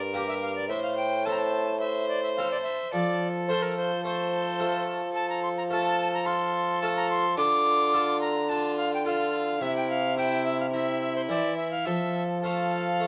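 An airy alto recorder with a soft, chiffy attack and vibrato sits up front on a second line just after the start, riding above a gut-strung violin that carries the melody in a reedy period style. Beneath them a close, dry harpsichord plucks a full French-style accompaniment on two sets of strings while a mellow solo bassoon holds the bass, moving from G minor through F, D minor and C. This solemn, rustic Renaissance-style consort dance moves at a steady 108 BPM in a moderate stone-room reverb, cut from a longer piece.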